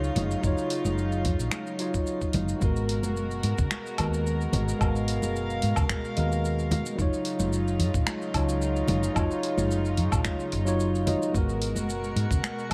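Sunset chillout at 110 BPM in G# dorian, wistful and warm, this excerpt from a longer piece rests on a dark, round fretless bass up front with analog chorus, a clean tine electric piano with digital delay, and distant, floating bowed strings carrying a 12-bit sampler grit, while a deep house kit of finger snaps, hi-hat, shaker and woodblock is joined by a thumpy, gritty electronic kick from 0.4 s and close, dry congas set in the background, a very quiet glassy harmonics texture drifting only through the opening 2.6 seconds and the final second as the chords move between D#m9/F# and G#m9 in light reverb.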